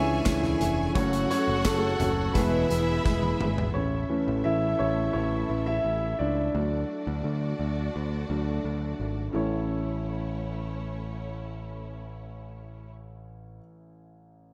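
Piano-driven pop with a warm, hopeful mood, heard as a short cut from a longer piece in a steady, straight four. A concert grand with deep bass and long sustain sits up front and carries the accompaniment, taking solo passages through the opening sections while the chords move from A/C# through F#m and E before settling on A, D and back to A. A punchy, direct electric bass holds the low end, and a lush, distant string section sustains bowed chords with rich vibrato beneath. In the opening moments, a smooth violin section adds a clear second line through a diffuse ambient delay, and a fingerpicked dreadnought acoustic guitar plays a riff with ensemble chorus in the background. Alongside them, a loose indie kit with handclaps, hi-hat, tight kick, snare and toms pumps in a small room, closing with a fill that ends at 3.8 seconds. The mix is dreamy and soaked in plate reverb.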